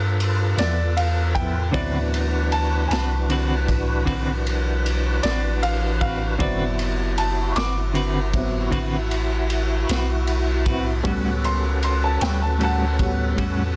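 A dense, heavily limited mix with light reverb carries this swaggering, rollicking slow blues excerpt in 12/8 at 52 BPM in D mixolydian, where a woody upright piano solos through plate reverb over G13, D13 and A13 chords, joined by a lightly overdriven tonewheel organ with key click, chorus vibrato and slow rotary speaker, a deep, up-front sine sub bass with a pitch-drop attack, a gritty, saturated garage drum kit of kick, snare and dark ride cymbal in a pumping small room, and a clean, picked electric guitar with tremolo entering at 0.6 seconds.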